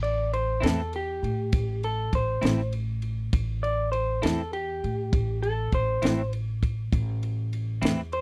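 The recording is dry and close, with a 1970s studio feel and little reverb, and every instrument sits up front. This brief cut from a longer slow blues in 12/8 has a smoky, soulful mood and a straight feel, resting on a single minor chord. A compact cocktail drum kit plays kick, ride and snare, with a punchy kick, dark cymbals and a high-tuned snare, while a pizzicato upright bass with gut strings gives a woody, thumpy low end. The clean, picked electric guitar enters at 0.6 seconds, treated with harmonic tremolo and carrying the solo. A second electric guitar, played through a small old amp, adds a lo-fi, slightly broken-up, warm counter line in a higher register.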